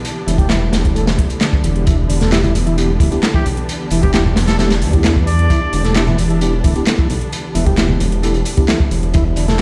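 Swaggering and funky, this breakbeat cut moves at 132 BPM in a straight 4/4, sitting on a single Em7 chord in E minor pentatonic. A crunchy, saturated acoustic break kit with a tight kick and medium-tuned snare drives up front, shadowed by a quieter overdriven garage kit of handclaps and metallic hats. A deep, rumbling detuned saw bass and a tonewheel organ riff, with its key click, slow rotary speaker and dub echo, arrive at 0.3 seconds, while a lush, dark symphonic string section holds sustained chords that pump against the beat. Bright, very quiet bongos and congas join around 2.2 seconds, and a mellow tine electric piano adds background stabs carrying 12-bit sampler grit and dub echo. From 3.3 to 5.9 seconds a nasal, jazz-style trumpet with a straight mute plays a short solo melody with vibrato, colored by an old-record sound and echo. The mix is dry yet loud, as if blasted through a big sound system in a bare stone room, and the fragment is cut from a longer piece.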